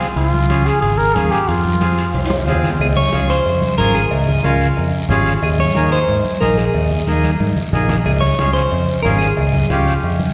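Heard through a lush church reverb with a 2.5-second tail, this fiery, passionate cumbia, cut from a longer piece, drives at 182 BPM in a straight 4/4. A warm flugelhorn leads up front with a punchy, vintage, vibrato-laden tone for a brief melody before a clean, picked electric guitar takes a solo from 2.8 seconds. Beneath them, a round, dark fingered electric bass sits forward, and a reedy, band-limited accordion fills out the accompaniment. The percussion blends a raspy, close guiro, bright thin-skinned congas and ringing metal-shelled timbales and cowbell set back in a distant large room, with drum fills arriving at 2.1 seconds and again later. The harmony moves through Db, F minor and Ebsus4 before returning to Db.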